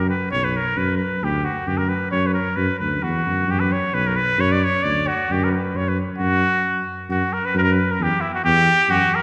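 A straight 2/4 pulse at 133 BPM drives this restless Balkan folk fragment, cut from a longer piece and set in F# phrygian dominant. A cornet with a straight mute carries the melody up front in a classical style, its tone nasal and bright as it ranges from E4 to D5 with virtuosic flair. Beneath it, a dark, punchy tuba holds down the bass between B1 and F#2, also played in a classical manner and placed up front. The harmony moves through colours such as F#add11, D6, Bsus2 and Dmaj7, then drops out at 6.2 seconds, ahead of a brief break from 6.6 to 7.1 seconds, before a new passage returns to F#add11 and settles on Em. The tuba stops at 9.0 seconds, just before the cornet's last note ends at 9.2. A wet concert hall reverb with a long 2.2-second tail surrounds both horns, giving the recording the spacious ring of a church or concert hall.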